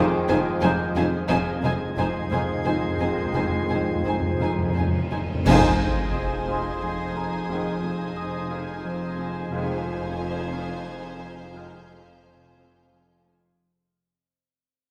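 Sul tasto violin sections carry the melody, a floating second line and a high texture over a woody viola section, a dark cello section and a double bass section, with mellow French horn and trombone chords, a ringing thumb-plucked Celtic harp riff, a bell-like, slightly out-of-tune celesta and a bubbling, detuned stepped-filter synth texture, as timpani with hard mallets, bright clash cymbals, a cymbal swell and concert bass drum join at 1.3 s to build toward a band accent at 5.5 s and a huge sub-drop impact, after which this ominous, tense cinematic suspense cue in 3/4 fades out inside a wet scoring-stage reverb.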